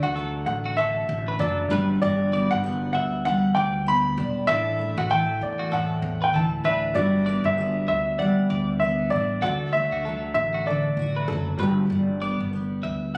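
Captured on a phone in a studio room, this compressed excerpt of sunny, easy-going acoustic pop carries moderate reverb, audible room ambience and a gentle sixteenth-note swing. A dark, woody upright piano sings the melody up front with a touch of delay until 11.7 s. A hushed, felt-muted upright piano with audible action noise, a double-tracked, full-bodied fingerpicked jumbo acoustic guitar and clean twelve-string electric arpeggios bathed in spring reverb fill out the accompaniment, all over a growly pizzicato upright bass.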